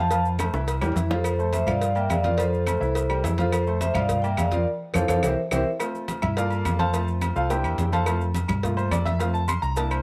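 Festive and joyful, this salsa excerpt opens with a metallic, motor-off vibraphone carrying the melody until 5.6 seconds, over a clear, somewhat worn grand piano accompaniment and a dark, round, punchy hollow-body electric bass up front, while the harmony circles between F, Gm7 and C7. A busy percussion bed fills out the groove: ringing, vintage-toned agogo bells and timbales, thick-skinned congas, tight high-tuned cowbell and bongos, grainy maracas and woody claves, most of them sitting in the background. After a drum fill and a band accent, the piano takes a solo from 5.8 seconds, all captured with close, detailed microphones and little reverb.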